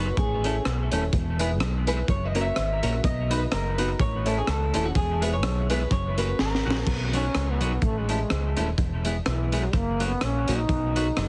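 Cheerful and joyful, this ska excerpt moves at 126 BPM in 4/4 with a light swing on the eighths, sitting in B major and cycling through A, E, F# and B. An electric guitar at the edge of break-up carries the opening solo melody with dub echo, while a clean, hollow-bodied semi-hollow electric guitar plays accompaniment and a dark, worn, slightly detuned upright piano adds stabs from the background. Underneath, a round, punchy fingered electric bass with tube saturation sits up front alongside a crunchy breakbeat drum kit with dark cymbals, a high-tuned snare, rim clicks and a gritty character, also treated with dub echo. A drum fill at 6.4 seconds leads into a breathy, whispered trombone solo with vibrato and a soft attack that takes over the melody from 7.1 seconds to the end. The whole mix carries light reverb and a heavily compressed, radio-like sound with a rolled-off top.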